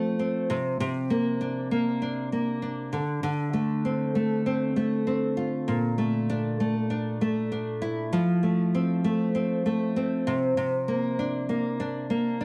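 A fingerpicked nylon-string guitar carries this short excerpt of laid-back, sunny indie pop on its own, sitting up front with a classical touch and a subtle chorus and vibrato shimmer. At 98 BPM in 4/4 with a light swing on the sixteenths, it moves through Csus2, D7(no3), Bbmaj7#11 and F before returning to Csus2 at 10.3 seconds. A modest small-room reverb surrounds the guitar, and the production leans dark and warm.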